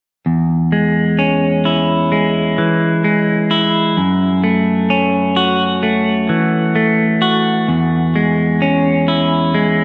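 Soaked in a long plate reverb, this dreamy, euphoric rock fragment carries a hopeful glow at a slow, straight pace. A clean electric guitar plays alone from 0.3 to 9.8 seconds, its picked, up-front tone bathed in spring reverb and a diffuse ambient delay. The harmony moves from E6 to F#m7 at 4.0 seconds and settles back on E6 at 7.7 seconds, cut from a longer piece.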